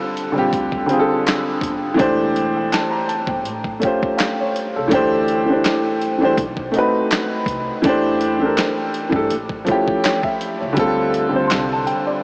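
A dreamy, cassette-worn mix, heard as if through a small speaker and soaked in a huge ambient reverb, frames this short cut from a longer lo-fi hip hop piece. It moves at 82 BPM in 4/4 with a gentle swing on the sixteenths, sitting in D minor with a hazy, reflective mood. An intimate upright piano carries the accompaniment up front from the first moment. Its slightly detuned, natural tone, with audible action noise, moves through rich chords such as G9sus4, C13/E and A7alt. A gritty, compressed sampler-style kit of kick, snare, hi-hat and handclaps enters at 0.2 s, with a thumpy kick and medium-tuned snare that sound re-recorded in a small room. A pizzicato upright bass with gut strings joins at 0.4 s and stays woody and in the background, and at 10.8 s the harmony settles onto Dm7 for a brief second section.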